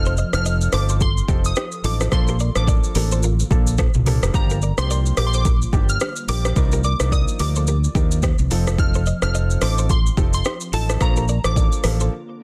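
A sultry, hypnotic afrobeats groove with a lilting swing opens on a glassy, crystalline wavetable pluck melody with chorus and tape echo, a clear baby grand piano and a round, punchy fingered bass up front, joined by an overdriven afro-pop kit with deep kick, metallic hats, rim clicks, shaker and toms, a twangy, compressed clean guitar riff with tape echo in the background, and a very quiet, ethereal FM pad sustaining jazzy seventh chords, all in a dry, dense, heavily limited mix that breaks at 12.1 seconds.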